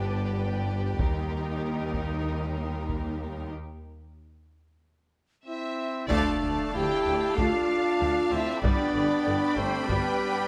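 Dramatic and dark, this cut from an epic orchestral film score opens on lush bowed violins, violas, a distant mellow French horn section and a low bed of tuba, double basses and cellos, with close, dry taiko drums joining at 1.0 seconds, then an airy flute and smooth-topped trumpet stabs arriving at 5.5 seconds and a very quiet focused string section entering at 6.1 seconds as a huge, dark impact sounds in the background of the recital-hall space.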